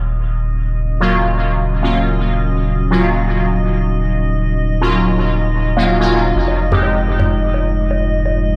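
A bright, juicy polysynth with a resonant filter sweep leads this short dub techno cut from a longer piece. Its detuned sawtooth stabs arrive at 1.0 s and stop at 6.9 s, drenched in chorus, phaser and dub echo. Beneath it, a round, soft sub bass made from triangle and square waves sits up front, while a moody analog pad holds slow-attack chords, darkened by a sub octave and chorus. High above, a glassy sine texture of drifting overtones hangs calmly on Eb5, bathed in its own reverb and chorus. Electronic woodblock and toms enter at 6.5 s in the background, re-recorded in a large room and trailing dub echo. At 126 BPM in Eb minor with a light swing, the chords move from Ebm7 to Fm7, and a lush hall reverb plus the sound of a big system in a bare room give the whole a deep, nocturnal air.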